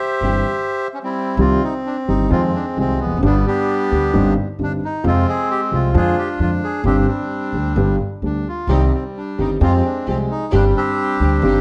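Tango in C harmonic minor at 131 BPM with a rubato feel, tense and sultry, this short excerpt puts a reedy, smooth bandoneon up front on the melody, carried by slapback echo and plate reverb, over a mellow grand piano with deep bass and long sustain and a woody pizzicato upright bass. A lush bowed string section with vibrato sits in the background, sounding a brief stab at 0.2 seconds and returning from 8.7 seconds as the harmony moves through Cm, Fmadd9 and Gsus4. The production is dark, in a moderate studio room.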